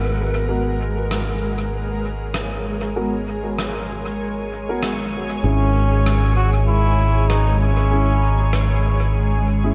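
A hazy, meditative ambient dub excerpt at 97 BPM in G# minor, with swung 16ths, opens on a blurred, evolving granular cloud pad holding a G#m9 chord over a bright, up-front fingered electric bass with tube saturation, soon joined by boxy, woody upright piano stabs in the background under a low-pass filter sweep and dub echo, a smooth rim click with a rolled-off top and dub echo from 1.1 seconds, and, as the harmony moves to C#5/G# at 5.4 seconds, a buzzy, thin solo trombone with a metal mute carrying the melody.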